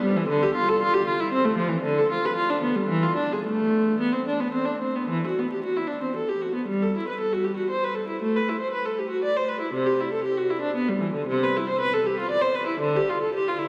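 This classical excerpt is a baroque-style suite movement for unaccompanied viola, solemn and introspective in mood. It moves at 116 BPM in 3/4, though the rubato phrasing keeps the pulse flexible. A single bowed viola plays throughout, ranging from C3 to D5 with a gut-string, period-style tone that is reedy yet smooth at the top, touched by light vibrato. The music begins in A minor and turns to E minor at 5.1 s, continuing until the passage is cut off at 13.7 s. The viola sits up front, yet the listening position is further back in a cathedral space whose reverb lingers for 6.0 s. A layer of vinyl crackle adds an aged patina to the sound.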